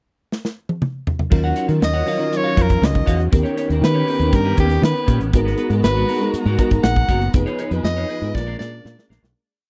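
A drum fill opens this slick, urban 1980s jazz-funk pop piece, and at 1.3 s the kit settles into a punchy sixteenth-note studio groove while an agile fingered bass, sparkling bell-like FM electric piano with chorus, clean hollow-body rhythm guitar and a sustained string pad with portamento all enter together. From 1.8 s a bright soprano saxophone with vibrato carries a motif-based pop melody over rootless, syncopated keyboard chords and a syncopated bass line with chromatic approach notes. The dry, close recording keeps drums and bass up front, and the piece ends with another drum fill as it fades out.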